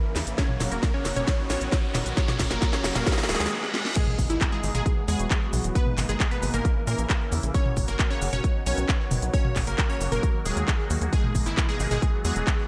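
A punchy, layered electronic kick sits up front alongside a house kit of cracking snare, crisp hats, claps, shaker, toms and crash, driving this bittersweet, emotional uplifting trance excerpt from a build-up full of drum fills, with a background riser and reverse cymbal, into the drop at 4.0 s, where an impact lands. A bright, detuned unison pluck carries the melody, with a catchy square-and-sine lead in the background as a second line; both are filter-swept through the build, phased, delayed and pumping against the sidechain. Beneath them, a mellow, evolving supersaw swell holds soft sustained chords, and a tight, nasal sequencer bass plucks and pumps, all set in a dreamy, reverb-soaked hall that keeps the top end soft.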